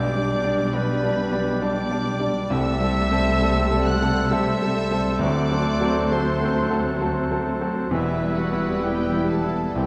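In a rubato three-four lilt, this passionate, lyrical romantic passage for piano and orchestra puts a clear, vintage grand piano up front with the melody, joined by a chamber violin section singing high with focused vibrato. Around them, bright clarinet, distant oboe, airy silver flute and a second, background violin section weave second lines, while mellow bassoon and a lush, very quiet viola section accompany, and soft horn and trombone sections hold sustained chords under distant trumpet stabs. Cello and double bass sections anchor the bass with expressive, bowed vibrato, the cellos adding portamento, and hard-mallet timpani strike briefly from 5.2 to 6.5 seconds as the harmony moves through a moderate scoring-stage reverb in a dark, warm production.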